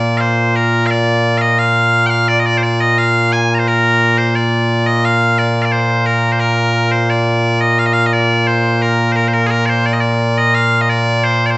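Solo bagpipes open at once, bright and piercing, sounding continuously up front in this stirring, proud fragment of Scottish pipe music at 87 BPM in 2/4 and Bb major. The phrase is played through twice, the second pass beginning at 6.4 seconds, over a range from Bb2 to Bb5. A wet stone-room reverb surrounds the pipes, and the sound is dull in the very highest treble, giving the loud performance a live, enclosed character.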